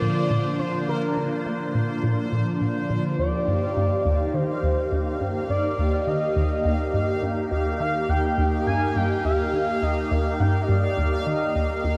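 A steady, straight four-beat pulse carries this expansive, cosmic excerpt of sequencer-driven ambient space music, where a squelchy, resonant blip pluck riff with phaser, ensemble chorus and tape echo sits up front beside a swirling, evolving phased analog pad, a smooth portamento lead sings a mellow, vibrato-touched melody through chorus and tape echo, a bright bubbling texture steps randomly through its filter, a filter sweep runs across a synth arpeggio sound, and the harmony moves from Bbadd9 to Eb at 3.2 seconds inside a huge, wet reverb.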